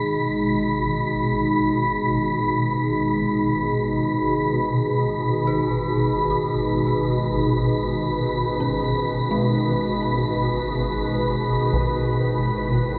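A cavernous, reverb-drenched space hangs over this desolate dark ambient drone in G# minor, a fragment cut from a longer piece that drifts in free time. Up front, a swarming, tense, detuned drone evolves in the low register beneath a deep, moody sawtooth pad that holds a G#m7 chord with slow-blooming, chorused sustain. An airy, breathy noise texture tuned to a single high pitch drifts above like wind. Further back, an eerie, inharmonic FM bell fades in with warbling, vintage arpeggios, its mellow tones smeared by chorus and delay. At 11.7 s, as the harmony shifts to E5, solo taiko drums struck with hard sticks land briefly, compressed, saturated and muffled by a low-pass filter, before the layers carry on to the cut at 13.0 s.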